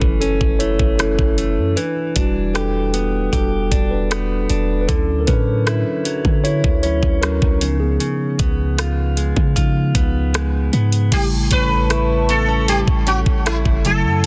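A dry, dense and heavily limited mix carries this moody, late-night contemporary R&B excerpt at 77 BPM in a straight 4/4, moving through F#m7, Em7, Dmaj9 and C#7 before arriving on A7. A mellow tine electric piano takes a solo through the first 11.1 seconds, over clean, compressed direct-recorded electric guitar arpeggios with delay, a deep, boomy 808-style bass with a dark decay, and an up-front trap kit of knocking kick, metallic hi-hats, rim clicks and crash, with soft clipping on the snare. At 11.1 seconds a buzzing, shimmering plectrum-plucked sitar melody with delay steps forward, while a hollow, airy, flute-like pad with chorus sustains chords in the background.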